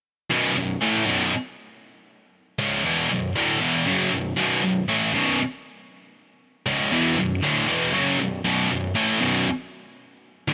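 Metal excerpt, heavy and aggressive, where a lone scooped, high-gain electric guitar, bright, picked and double-tracked up front, grinds through distortion from 0.3 to 10.5 seconds over a B5 chord in light digital reverb.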